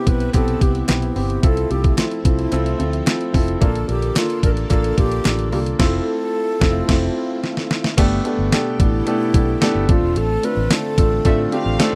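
1980s-style pop at 110 BPM with a nostalgic, uplifting mood, this short passage from a longer piece sets a breathy, hollow concert flute melody with tape echo over an up-front grand piano, a round, punchy muted electric bass and a shimmering string machine playing sustained violin chords in the background. A clean 12-bit drum machine drives things with a thumpy kick, fat snare, hi-hat, tambourine and crash, joined by a crisp, very quiet group handclap until 5.4 seconds, with a band accent and a drum fill leading into a new section at 8.0 seconds. At 11.2 seconds a lush, distant studio violin section enters with vibrato and portamento, all in a dry, close 1970s-style studio sound.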